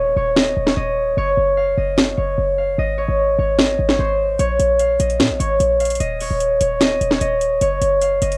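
Dark, hard-hitting trap hip hop at 149 BPM with a half-time feel, cut from a longer piece, where a bright, fingerpicked Celtic harp rings up front through cassette tape coloring and plate reverb over a progression moving from Dbsus2/Eb through Gb5, Ab and Bbm. A punchy, tight 808-style bass with a sine body, noise layer, fast attack and decaying tail anchors the low end. An overdriven electronic trap kit with a sharp snare and metallic hats, re-recorded in a small room, arrives at 0.4 seconds, while a very quiet downlifter runs until 1.2 seconds, all within a lo-fi home cassette sound with light reverb.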